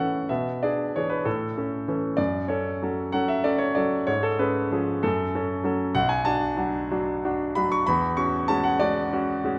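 Classical romantic character piece for solo piano, lyrical and warm in mood, moving in a lilting 6/8 with free, breathing rubato. The concert grand carries everything alone across the 9.6 seconds, reaching from a deep bass low in its register up to glittering high notes, and its tone is brilliant and polished, with a short sustain that keeps each chord clear. The instrument sits up front and present, while a recital hall's reverberant ambience, with a decay of about 1.5 seconds, surrounds it with a soft glow. The harmony drifts from E7 over B into A and F-sharp minor, passes through C-sharp7 over G-sharp back to F-sharp minor, and settles on B minor 7 before closing on a rich E13. Tuned slightly high at A4 = 444 Hz, the passage is a brief fragment lifted from a longer work.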